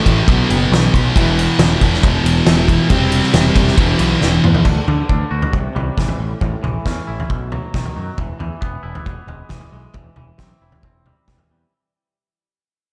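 A thick, double-tracked fuzz guitar riff dominates the opening of this restless, anthemic quiet-loud alternative rock excerpt at 136 BPM in 4/4, driven by a growling, punchy overdriven bass and a loose, roomy drum kit with a fat snare, tight kick and dark cymbals. A drum fill at 4.2 seconds ends the riff, and from 4.7 seconds a clean, twangy guitar plays compressed arpeggios through digital delay. The section moves through D, C, A, B and E chords as the piece fades out, under a light studio reverb.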